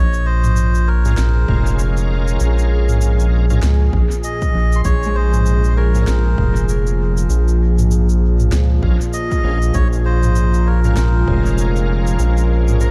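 Light digital reverb surrounds this hazy, meditative ambient dub excerpt at 98 BPM in Bb minor, where a round, deep analog bass with tube saturation sits up front beneath a smooth, warbling chorused pad holding a Bbm7 chord, joined by a reedy, breathy melodica melody with delay, an electronic kit with woody snare, cabasa, toms and dub echo, bright, shouting tonewheel organ stabs with overdrive and slow rotary speaker from 1.1 s, a punchy overdriven electronic kick in the background from 1.5 s, and ringing acoustic Celtic harp arpeggios from 4.8 s.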